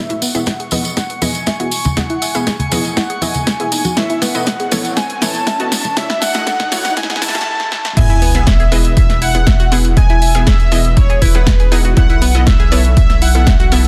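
Euphoric and hopeful, this progressive house excerpt in straight 4/4 opens with a build-up that runs to 8.0 seconds, as filter sweeps move across the velvety synth lead, the airy supersaw beneath it, the nasal analog pluck arpeggios and the detuned unison pluck stabs, all carried on digital delay. A glassy, drifting harmonics texture sits far back, while congas with hard hands, a jingly background tambourine and a house kit with a punchy snare and warm hats build the groove around a punchy electronic kick, with drum fills and a very quiet riser adding to the lift. At 8.0 seconds the drop arrives with an impact, and a round, deep, dark analog bass enters, pumping against the kick along with the plucks, supersaw and cymbals. Throughout, the supersaw carries a vintage 12-bit sampler grit and the arpeggios carry phaser and cassette-tape colour, while the chords move from Emaj7 through B9sus4 and F#m7 before returning. 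The mix is dense and heavily limited, with light reverb.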